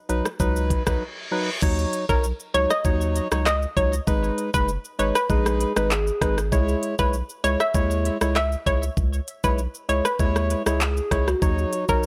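A bouncy, tough dancehall groove in C# dorian at 98 BPM opens with an up-front island pop drum kit, its knocking kick, smooth hats, handclaps, rim clicks and shaker driving a straight 4/4 pulse beside a deep, saturated sub bass and a mellow, organ-like stab chopping out chords with a chorused shimmer. A reverse cymbal sounds from 0.8 to 1.6 seconds, carrying through a short break that begins at 1.0 seconds and setting up the main section. At 2.1 seconds a bright, hollow square-wave pluck takes the melody, its filter-plucked, detuned tone spread with chorus and digital delay. From 5.3 seconds a softer, woody clarinet-like synth lead adds a second line, full-bodied and sustained with vibrato, phaser and delay. The harmony moves from B through G#m and C#m to a closing D#m7, all set in a digital ambience that gives this excerpt from a longer piece a roomy, produced sheen.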